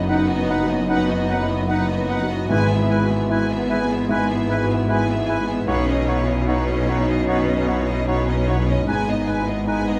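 A rich, lush violin section sings a sorrowful melody from the start of this moving cinematic excerpt, which unfolds freely around 75 BPM over chords moving from B/F# to E/G#, Badd9 and G#m. A second, more distant violin line, an intense viola section and a mellow French horn section sit in the background. A focused cello section and a smooth double bass section carry the bass, and a warm, open baby grand piano adds long-sustained accompaniment. An airy silver flute, a warm oboe and a very quiet clarinet add gentle second lines, and calf-headed timpani murmur briefly from 2.5 to 3.7 seconds, all wrapped in moderate concert hall reverb.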